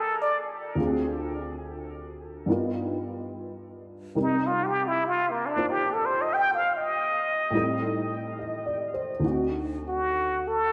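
A plunger-muted trumpet and a dark baby grand piano begin together in a slow, intimate late-night jazz swing at 71 BPM. The bright trumpet carries the melody as a close, up-front solo full of wah-wah inflections, scooped notes and light vibrato, trailed by a diffuse ambient delay. The mellow piano accompanies through changes from Bbmaj7 toward D7b9, its short sustain, ensemble chorus and audible action noise all close at hand, while a plate reverb soaks the dreamy 10.7-second passage, which is cut from a longer piece.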